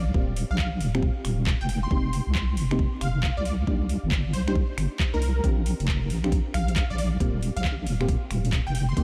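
UK garage in a two-step groove at 136 BPM with a swung 16th feel, this sunny, soulful piece, cut from a longer track, rides a deep, up-front wobble bass pumping against an overdriven knocking kick, while dark, mellow chord stabs coloured by phaser, gritty 12-bit sampler texture and tape echo move through Eb69, F9sus4, Cm9 and Bb6, metallic hats, finger snaps and handclaps from the garage kit join at 0.4 s, and a catchy, bright plucky unison lead with vibrato and tape echo enters at 0.5 s, all set in light digital ambience over a bed of vinyl crackle.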